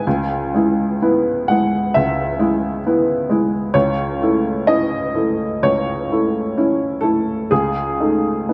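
This neoclassical minimalist piano piece opens in a melancholic, wistful mood, moving at a slow pace with a loose, rubato feel over a four-beat metre. A lone upright piano carries the whole fragment from 0.0 to 8.5 s, spanning from deep bass notes up into the upper middle register. Its tone is woody and worn, slightly detuned, with a short sustain, and it sits up front in the mix. The harmony drifts from C#m7 to A/C# at 3.7 s and then to a rootless B7/C# at 7.5 s, all with C# in the bass. A moderate concert-hall reverb lends the piano some open space, while the top end is softly rounded off, and the passage is clearly cut from a longer piece.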